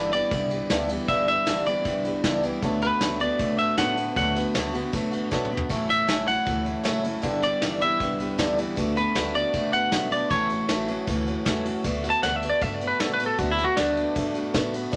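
This is a rollicking, rowdy rockabilly clip in D major, taken from a longer piece and moving at 156 BPM in a straight 4/4. Up front, a bright, clean semi-hollow electric guitar carries the melody, while a boxy picked acoustic archtop picks out accompaniment over sixth chords cycling through G6, D6 and A6. Beneath them, an electric guitar played through a small old amp adds a twangy, slightly broken-up riff soaked in spring reverb until 11.8 s. A woody, thumpy upright bass with gut strings anchors the low end, and a vintage brush kit in a small room supplies a punchy kick, a medium-tuned snare, toms and dark ride cymbals with a rolled-off top, breaking into a short fill at 5.3 s. From 11.8 s a clean electric guitar solo steps forward to the end, and a moderate studio reverb gives the whole band a lively sense of space.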